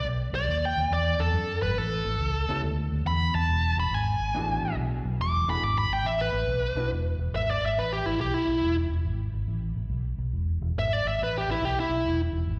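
A swung 4/4 shuffle at 140 BPM drives this soulful, rollicking electric blues in E mixolydian, moving from B7 through A and E9 before settling on E at 6.9 seconds. A smooth, overdriven lead guitar takes a solo up front through plate reverb, slapback and tape echo until that point, carrying the melody over a dark, round, foam-muted fingered electric bass that runs the whole clip. From 2.5 seconds a clear, woody upright piano adds intimate accompaniment with audible action noise and long sustain, and the performance comes across as a live gig heard through the venue's PA in a recital hall.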